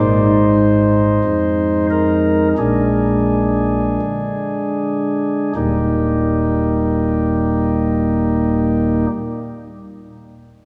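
Drenched in a long, wet church reverb, this serene and reverent classical chorale fragment, cut from a longer piece, features a solo pipe organ on soft flute stops with a baroque voicing and audible chiff, sitting up front and spanning Eb1 to C5 as it slows over its opening moments through Fm7/Ab and Bb7 before settling onto Eb at 5.6 seconds, the organ sounding until 9.1 seconds.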